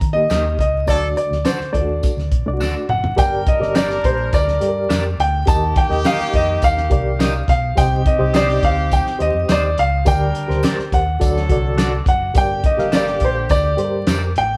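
Passionate and driving, this uptempo 1960s-style soul excerpt in G minor at 105 BPM features an intimate, up-front grand piano carrying the melody over a fat-snared soul drum kit, a dark, round fingered bass, a reedy electric piano with fast tremolo, twangy slightly broken-up guitar stabs with spring reverb, a clear horn section with vibrato entering at 0.9 seconds for a band accent, and a jingly tambourine in the background, all captured live in one room with vinyl crackle and a drum fill at 2.6 seconds leading into the main groove.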